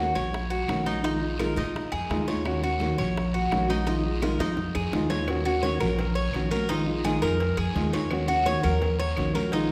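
A straight 4/4 pulse at 170 BPM drives this sultry Cuban son and guajira groove in Eb minor, cut from a longer piece, where a bright, metallic Cuban tres plays double-string arpeggios up front beside a growly pizzicato upright bass on steel strings and a thumb-plucked classical nylon-string guitar with finger squeak, cycling between Ebm7 and Bb7sus4, while high-tuned congas sit distant in the background, tight bongos and cowbell and woody claves sound very quietly, a raspy vintage guiro hovers behind, and a drum fill from 4.2 to 5.3 seconds leads into the second section, the whole mix bathed in the long reverb of a church or concert hall.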